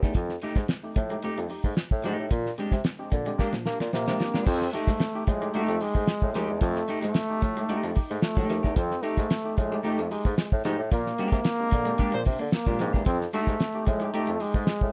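A playful, energetic funk groove at 112 BPM in F mixolydian opens on a cloth-damped, thuddy drum kit with a fat snare, a bassoon bass line with light vibrato and dark, fingered semi-hollow guitar chords, joined by a clean picked guitar riff and barky, lightly overdriven tine electric piano stabs with chorus in the background, before an up-front jazz-style trombone with scooped notes takes the melody at 3.9 seconds, followed by jingly tambourine at 4.5 seconds, with a brief, tight horn-section line at 12.1 seconds, all cut from a longer piece and set in a dark, warm production with little reverb.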